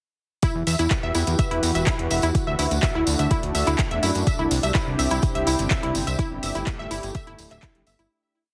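An overdriven, deep four-on-the-floor kick drives this dreamy, bittersweet progressive house drop from 0.4 seconds, joined by programmed metallic hats and backbeat handclaps, jingly hand-played tambourine sixteenths, and a fat, detuned sawtooth analog bass rolling in sixteenths with a filter sweep. A punchy, wave-folded unison pluck runs a 3-step sequence that drifts against the bar through cassette-tape grit and digital delay, while a lush, slow-attack pad holds chorused chords from Emadd9 through D and Cadd9 to Gsus2, the pad, pluck and bass all pumping to the sidechain. The whole piece has a heavily compressed, radio-like sound with light reverb and fades out from 5.5 seconds.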